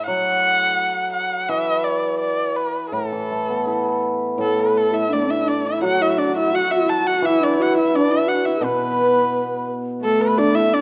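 A dark, nasal erhu sings the graceful, expressive melody up front with vibrato and portamento, over a shimmering, ringing hammered dulcimer in this festive excerpt of Chinese chamber music. The piece moves rubato around 85 BPM in 4/4, in the A zhi mode, tuned to A4 = 437 Hz. At 4.4 s a husky, woody horsehead fiddle enters in the background alongside an airy, reedy low bamboo xiao, each adding a second line, all set in a moderate recital hall reverb with a dark, warm production.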